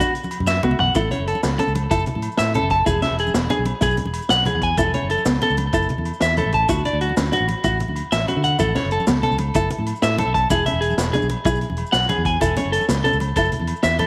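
A picked electric guitar on the edge of break-up opens this carefree highlife guitar band passage at 0.0 s. It sits up front, compressed and trailed by tape echo as it spins arpeggios, and it starts together with a full-bodied, fingerpicked nylon-string guitar in a deep classical voice, thick-skinned congas played close and dry with hard hands, and grainy maracas. A vintage drum kit with a punchy kick and a rolled-off top marks the start with a fill at 0.5 s, while ringing agogo bells and a direct, fingered electric bass settle in underneath. At 126 BPM in a straight 12/8 in A major, the harmony cycles through Dadd9, A, E and A/E, and a second drum fill at 8.1 s turns the progression around. A moderate echo chamber reverb and small room ambience give the mix a warm, sunny glow, and the passage is cut from a longer piece.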